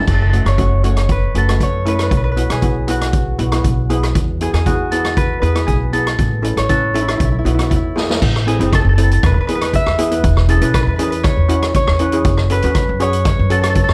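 Sunny and festive, this short calypso cut from a longer piece sets a fingerpicked concert harp melody, with its ringing tone, over shimmering, bright double-seconds steel pan played with hard rubber sticks. A growly pizzicato upright bass with woody steel strings sits prominently underneath, while an up-front street-band drum kit with dark cymbals, a boomy kick, rim clicks and a medium-tuned snare keeps a straight groove, marking the move into a new section with a drum fill at 8.0 seconds. The production is dark and warm, with light reverb and a small-room feel to the drums.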